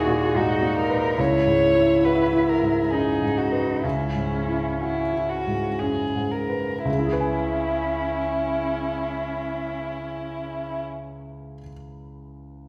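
A clear, intimate grand piano with audible action noise and long sustain accompanies this melancholic, fragile neoclassical piece for piano and strings, a rubato 3/4 in C# dorian at 56-73 BPM that slows through its opening 6.9 seconds, while a single con sordino violin sings a veiled, up-front melody with vibrato and portamento over a distant solo cello's dark, soft-attacked second line until both strings stop at 10.8 seconds, after which the piano rings on alone in a resonant recital hall until 12.7 seconds, in a fragment cut from a longer work.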